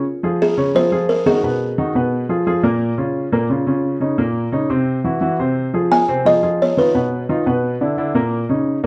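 A brisk, straight 4/4 pulse drives this short jazz excerpt, giving it a sultry yet driving character. A baby grand piano carries the accompaniment throughout, sounding natural and up front as it moves through rich harmony, from an opening Dbmaj9 through Abm7 and Bbm to a closing Eb7 voicing. A plucked kalimba takes the melody in two brief phrases, from 0.4 to 2.6 seconds and again from 5.9 to 7.4 seconds, its woody, buzzing thumb-plucked tone short, vintage and band-limited, sitting close in the mix. The two parts are heard through a club reverb, and the overall production is dark and warm.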